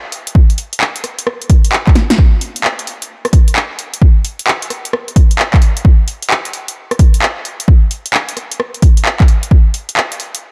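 A dark, dry production frames this soulful, late-night UK garage fragment at 131 BPM in 4/4, swung at 65% on the sixteenths. An up-front punchy analog drum machine enters at 0.1 s with handclaps, hi-hat, rim click and a punchy, overdriven snare, its snare, clap and hats carrying a short room, and a drum fill arrives at 2.0 s. Alongside it, a punchy, overdriven electronic kick drum, analog in character and also pushed forward, comes in at 0.3 s and drives the groove.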